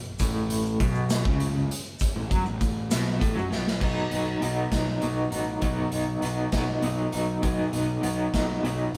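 Psychedelic rock with a hypnotic, hazy mood, moving in a slow 6/8 at 66 BPM in B mixolydian, cut from a longer piece and played live in one room with light reverb. A slightly broken-up electric guitar through a small old amp carries the riff with tremolo, up front beside a raw garage drum kit whose gritty, saturated sound has bright cymbals, a punchy kick and a pumping stone-room ambience, while a fuzz-drenched picked bass adds overdriven punch and very quiet, grainy maracas shake only until 3.6 seconds. The harmony rests on Aadd9 before a drum fill at 3.5 seconds leads into a new section on B at 3.8 seconds.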